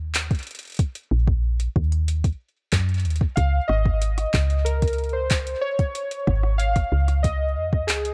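Warbling, detuned lo-fi synth keys take the melody from 3.4 s, their chorus, delay and vintage 12-bit sampler grit lending a nostalgic, melancholic tinge over a Dbsus2 chord. Beneath them, a round, woody FM bass and an overdriven, up-front soft kick drive this intricate IDM excerpt in straight 4/4, alongside a booming analog drum machine with handclaps, metallic hi-hats and rim clicks. The production is dark, with light reverb.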